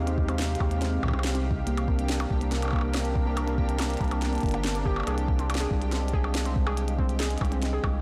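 A deep, round analog bass with tube saturation sits up front in this melancholic, eerie IDM passage at 141 BPM, beneath a smooth, detuned vintage pad with chorus, a bright pulsing gated texture in the background, a nasal, lo-fi pluck playing arpeggios through chorus and delay, a glitchy drum kit of tiny snare, clicky hats and percussion blips with tape echo, and a soft overdriven electronic kick, all over Fm9, Gm7/C and Dm7b5/C chords in a blown-out, overdriven recording with light reverb.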